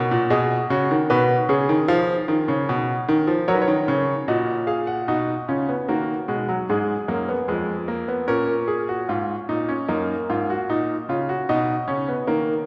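Lively yet stately, this short passage cut from a longer piece is a baroque-style four-part fugue played on solo grand piano in a steady 4/4 with a straight feel. The piano sits up front with a brilliant, polished tone and short sustain, its voices spanning from F2 up to F#5. A generous concert hall reverb, with a decay of about 2.2 seconds, surrounds the instrument and gives the counterpoint a spacious, resonant setting. The harmony moves from G#m7/B through C#7 to F# in the opening section, then a second section beginning at 5.1 seconds travels through B, Fdim, A#m and D#m/F#. It settles on a rootless G#m/B near 11.5 seconds before the excerpt ends at 12.7 seconds.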